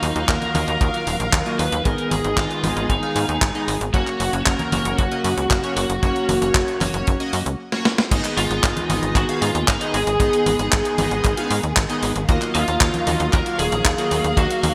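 Italo disco at 115 BPM in G# dorian, this nostalgic, melodramatic excerpt sets a dark, overdriven lead guitar melody, wrapped in lush chorus and delay, over a punchy, nasal sawtooth sequencer bass and a tight, dry kick entering at 0.3 seconds. A glossy chorused polysynth adds retro stabs with filter sweeps, while a rich, biting bowed string section holds sustained chords in the background and a sampler-style, tape-warm drum machine supplies congas, handclaps, hi-hat, crash and a medium-tuned snare, all treated with gated reverb. A drum fill at 7.7 seconds leads into the second section, all within a bright 1980s-style digital production with hall reverb and faint mains hum.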